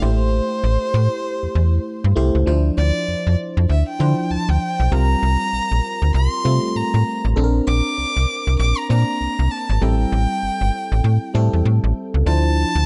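A bowed solo violin with a rich, smooth vibrato carries the melody from the opening second, over a glassy, bell-like FM electric piano treated with chorus and phaser and a snappy, metallic slap-style FM bass sitting up front in the mix. This confident, bouncy new jack swing R&B groove moves at 98 BPM in D minor with a swung sixteenth feel, cycling through Am7, Dm9, C7sus4 and Bbadd9. The production is dark and warm, and the clip is cut from a longer piece, ending at about 12.9 seconds.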